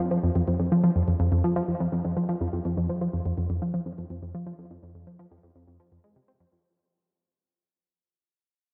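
A dreamy mix soaked in a lush hall reverb, with a 2.8-second decay, gives this short ambient excerpt a mysterious, cosmic atmosphere. The only part is a tight, driving sequenced synth that plays solo from 0.0 to 6.6 seconds, ranging from F2 to C4. Its detuned sawtooth and square-wave tone has a filter pluck, a fast attack and a sustained, mellow body, and it sits up front. Chorus, cassette tape colouring and delay further shape the synth. Set in F minor at 124 BPM in a straight 4/4, with tuning at A4 = 441 Hz, the passage fades out across its whole length.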